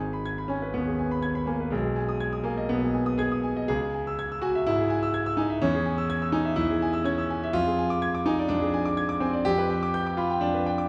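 Classical virtuoso piano study in an agitated, passionate mood, heard as a short passage cut from a longer piece, where a solo concert grand with a clear, smooth, vintage tone, deep bass and an up-front presence plays in flexible rubato across a span from G#1 to G#6 for about 10.9 seconds, bathed in the wet reverb of a recital hall with a softened top end.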